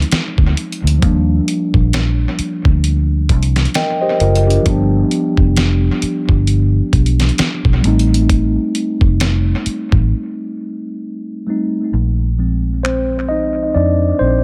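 Romantic and smooth, this short slice of contemporary R&B moves at an unhurried pace with a gentle swung lilt in its sixteenths. A mellow tine electric piano carries the harmony, its clean, direct tone touched by analog delay as it moves through chords from a rootless Bb7sus4 to Ebmaj7, G7 and F7, adding a brief fill around 3.3 seconds. Underneath, a dusty sampler-style drum kit supplies finger snaps, hi-hat, a thumpy kick and a fat snare, its compressed, gritty sound also fed through analog delay, while a vintage foam-muted fingered electric bass sits low with a round, dark, amped tone. After a break from 10.1 seconds, the piano takes a short solo from 11.9 seconds as the kick drops out, and the drums stop at 13.1 seconds, leaving bass and piano to close the piece. The mix is echo-heavy with light reverb, and all three parts sit up front, giving the fragment an intimate, late-night glow.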